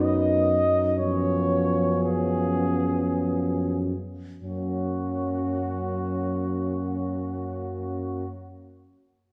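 Heard from further back in a reverberant recital hall, this serene, lyrical brass-band hymn in F# major moves in a rubato 3/4 at 46-65 BPM, slowing through its opening 4.4 seconds as the harmony passes from B over F# to C#7 over F# before settling on F# at 4.4 seconds. Up front, a dark trumpet section carries the melody with light vibrato and a smooth top, while a warm tuba with a smooth top anchors the bass. In the background, a mellow French horn section sings a second line, and a soft-attacked trombone and a distant, roomy, warm euphonium, both with gentle vibrato, fill in the accompaniment.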